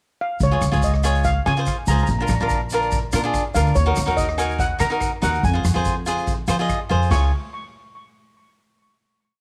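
Calypso at 143 BPM in Db major, bouncy and sunny, with a shimmering steel pan playing a motif-based lead through cassette tape and analog delay from 0.2 seconds, joined by a woody, growly pizzicato upright bass on a syncopated figure, a crisp picked cavaquinho playing rhythmic triad chords, a street-band drum kit with a boomy kick laying down a calypso groove, and a grainy tube shaker, all in a small-room home cassette recording that settles on a final Db chord at 7.1 seconds.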